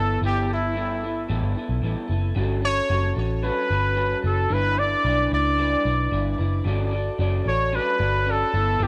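Lightly reverberant with a studio ambience, this hazy, nostalgic bedroom-pop cut of indie pop moves at 112 BPM in a straight 4/4, where a warm, punchy trumpet with scooped notes and a smooth top carries the up-front melody through analog chorus and tape echo, a slightly broken-up, lo-fi electric guitar through a small old amp supplies picked accompaniment bathed in lush chorus and vibrato, and a dark, round, foam-muted picked electric bass sits up front beneath the G69, A13, Em7/G and Bm9 changes.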